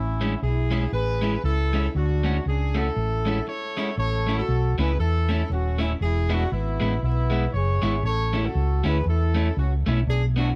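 Ska with a cheerful, joyful lilt, this brief cut from a longer piece pairs a present horn section carrying the melody with light vibrato over a dark, round hollow-body bass sitting up front, while a slightly broken-up picked electric guitar with dub echo fills in from 0.2 seconds, all dry and dusted with vinyl crackle, before a short break at 3.5 seconds leads into a new section.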